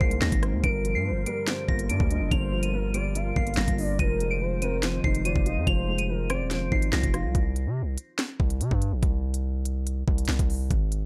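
A dark, cold drill track in C minor at 143 BPM with a half-time feel opens on a soft, pure FM bell melody high above a smooth, gliding portamento lead, both treated with chorus, phaser and analog delay, over a boxy, mellow grand piano and a hollow, flute-like pad warbling in the background. Up front, a saturated, aggressive 808-style bass and an electronic drill kit of knocking kick, sharp snare, crisp hats, rim clicks and finger snaps drive the chords from Abadd9 through Gm7 to Fm7. Around 7.3 s the bell, lead, piano and pad drop away, leaving the bass and drums alone on a C5 chord until the cut at 11.1 s, all in a dry, gritty sound with digital ambience.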